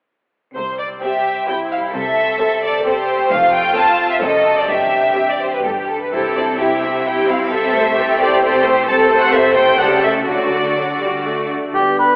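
Heard through a narrow, telephone-like filter and bathed in wet concert hall reverb, this fast, dramatic romantic orchestral passage in C major moves at 130 BPM in 3/4 with a supple rubato feel, graceful and lively in mood. Violins carry the lush, vibrato-laden melody up front, while a second violin line and an intense viola accompaniment join beneath at 1.0 s. A concert harp rings out fingerpicked arpeggios, and focused cellos with expressive double basses hold the bass in the background, the basses dropping out briefly before returning at 8.9 s. The harmony passes through a diminished chord and an A7 over C# before arriving on D. At 11.7 s a roomy oboe steps up front with a second line over mellow, tight French horn chords as the fragment is cut off.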